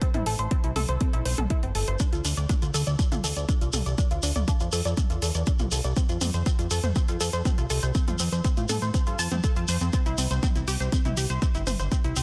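A tight, detuned sawtooth synth arpeggio opens this dramatic, cinematic melodic techno excerpt at 121 BPM in D dorian, its plucked tone coloured by chorus, phaser, dub echo and sidechain pumping. A punchy, overdriven, up-front electronic kick and a house kit with bright, gritty hi-hats and toms drive it from the start, while a fat, thick analog bass with a moving notch pumps beneath over a progression of Am, Dm, F and C. A grainy, close acoustic shekere joins at 2.0 seconds, all inside a dry, dense, heavily limited modern mix tuned to A4 = 435 Hz.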